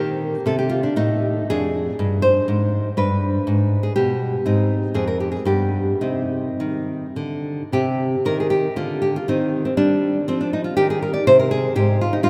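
A vast, echoing cathedral reverb with a long decay surrounds this short cut from a longer classical piece, a solemn baroque-style dance in C minor. A lone nylon-string guitar sits up front, full-bodied and fingerpicked, ranging from F2 to D5, with finger squeaks audible over the strings. The dance moves in 3/4 at a flowing, rubato pace that drifts between 102 and 126 BPM. The harmony passes from Eb through Dm7b5/F and G to Ab, Fmadd9 and G before settling on Cm at 6.0 seconds. A new section begins at 7.7 seconds, moving through Cm/Eb to a closing Abmaj9 that rings into the cavernous space.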